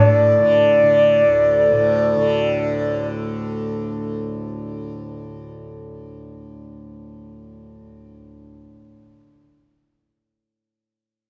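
A dry, close studio sound in a 1970s style frames this serene, devotional Indian classical passage in 7/4, cut from a longer piece. An airy bamboo bansuri sits up front, carrying the melody with vibrato and tongued notes until 3.1 seconds. A bright, buzzing tanpura drone, softly plucked and shimmering, sits far lower in the mix and carries on to 9.3 seconds.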